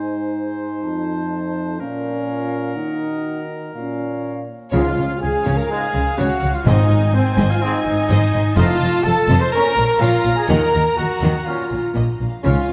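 A straight 4/4 pulse at 124 BPM drives this heroic, cinematic adventure cue in Db major, a triumphant fragment lifted from a longer score. It opens with winds and brass: a mellow solo clarinet, a hollow, distant silver flute and a punchy oboe weave secondary lines, while a dark, tight French horn section and a roomy trombone section hold sustained chords beneath warm trumpet stabs. At 4.7 seconds the strings arrive, as a lush, distant violin section carries the melody over a softer second violin line, a very quiet, focused viola accompaniment, and a woody bass from cellos and double basses. Timpani played with medium mallets punctuate the entrance of the strings until 7.3 seconds, and the clarinet drops out just before, at 4.5 seconds. Harmony cycles through Ab, F7, Bbm and Ebm, returning after a Db arrival, and a wet scoring-stage reverb gives the ensemble a spacious sheen.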